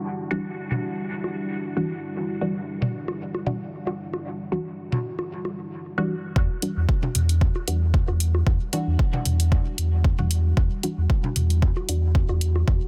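A clean, smooth sine sub bass arrives with a punchy kick at 6.4 seconds, both sitting up front in this deep, nocturnal dub techno piece with a gently swung 4/4 groove. Before that, a moody, detuned sawtooth pad sustains an Em9 chord through chorus and reverb. Muted, phased chord stabs trail dub echo over tape-warm electronic toms and bongos, while a filter sweep runs through the opening section. Dark hi-hats join at 6.6 seconds, sidechain pumping breathes through the pad, stabs, percussion and bass, and the mix is dense and heavily limited.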